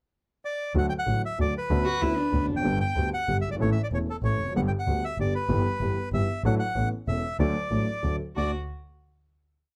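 A reedy bandoneon opens this brief, complete tango alone at 0.5 s with a short pickup, then carries a playful, elegant, motif-based melody in balanced phrases up front. Piano and bowed double bass enter together at 0.8 s in a lilting 3/4 waltz-time tango rhythm at 189 BPM, accenting the first beat, though the feel stays rubato. The piano sits up front with a warm tone, while the single bass player bows with a biting, airy sound, light vibrato and real intensity. A distant solo cello slips in briefly at 1.8 s with vibrato and expressive portamento, answering phrases in the melody's rests, and returns for the closing D major chord at 8.4 s. The sound is dry and closely miked, with fine detail in every line.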